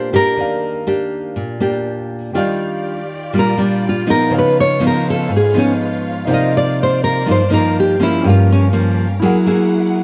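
A fingerpicked nylon-string guitar carries the melody up front, its full-bodied classical tone touched with finger squeak and set in a plate reverb, and its melody line stops at 8.7 seconds, while a nylon-string guitar solo runs from 2.3 seconds to the end. This is a romantic, relaxed bossa nova excerpt in Eb major at 122 BPM in a straight 4/4, cut from a longer piece. A second nylon-string guitar fingerpicks the accompaniment throughout, with a smooth, vintage-sounding grand piano sitting in the background. At 2.3 seconds a dark symphonic violin section enters with lush, bowed sustained chords, soft in attack and expressive with vibrato. The harmony moves through rich extended chords such as Ebmaj9, Db9 and Cm11, and the whole mix has a dark, warm production in a moderate studio reverb.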